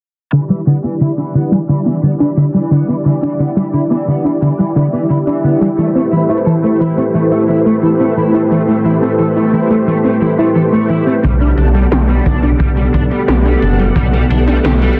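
Moody and driving, this synthwave excerpt moves at 88 BPM in 4/4 with a straight feel in E minor, cut from a longer piece and moving through Em7, Am7 and Gmaj7. A lush, full-bodied string machine holds sustained chords up front with a slow attack, sub-octave weight and ensemble chorus, pumping against the beat. Beneath it, a soft, round pluck spins mellow arpeggios through chorus and tape echo, while a crunchy, double-tracked overdriven electric guitar plays a picked riff further back under a low-pass filter, both parts carrying filter sweeps across the whole passage. At 11.2 s a thick, detuned saw bass arrives up front alongside 80s electronic pad drums with a gated snare and metallic hats, plus a dark, punchy kick that sits in the background and drops out at 14.1 s. Everything is bathed in a lush hall reverb, and the master is dense and heavily limited.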